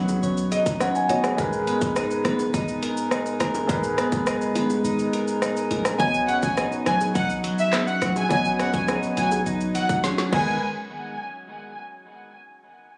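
A bright, twangy twelve-string electric guitar arpeggiates with tape echo over an intimate concert grand piano that pumps against the beat, while a tight, woody island pop drum kit, soft-handed high-tuned bongos and a deep, boomy 808-style bass set a bouncy, sultry dancehall groove at 104 BPM moving between Badd9 and G#madd9, the kick drops out from 4.8 to 6.0 s before an expressive, vibrato-rich violin section enters up front at 6.0 s, and the whole cut sounds as if captured on a phone in a reverberant club.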